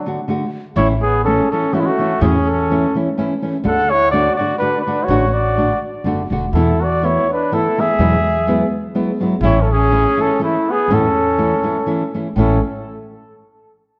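A lightly swung 3/4 lilt at 124 BPM carries this proud, romantic mariachi fragment in A major, where a breathy, mellow trumpet leads up front with scooped, jazz-style phrasing over a clear, classical-style second trumpet with light vibrato, while a dark nylon-string guitar is fingerpicked with audible finger squeak and a woody, thumpy pizzicato upright bass joins at 0.8 s as the chords move from D through A, D again, Esus4 and Eadd9 back to A, all set in a recital-hall reverb and colored by the warbling pitch drift of worn cassette tape.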